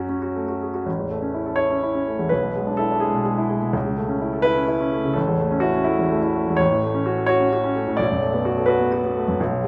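Flexible rubato phrasing pulls and pushes against a 6/8 metre in this short cut from a longer classical piano study of virtuoso character. The mood is agitated and passionate, carried by a solo grand piano that sounds polished and present, placed up front with a long sustain that lets each harmony ring. The instrument covers a broad span from deep bass up into the upper middle register, heard from 0.0 to 9.7 seconds. The harmony opens on F# minor before turning through A, E7 over B, A over C# and back to A, then settles toward F# minor over A and a closing Bm7. A recital hall reverb surrounds the piano with a generous, reflective space that adds to its passionate intensity.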